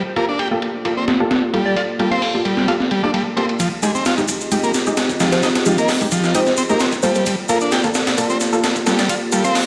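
A funky, energetic breakbeat groove at 131 BPM with a light swing rides on a gritty, compressed sampler-style kit, its thumpy kick and high-tuned snare up front, while a buzzy vintage combo organ riff with heavy vibrato and delay sits alongside bold, bright orchestra-hit-like synth stabs over moving Gm9 and Fm9 chords. A deep, moody analog pad holds sustained chords in the background, roughened by 12-bit sampler grit, chorus, phaser and sidechain pumping. A catchy plucky unison lead with a small-speaker tone flickers in briefly at 1.7 seconds and returns at 5.3 seconds, after a tape-warm shaker joins at 3.6 seconds to drive a build-up, all set in a stone room's plate-like reverb in this short excerpt.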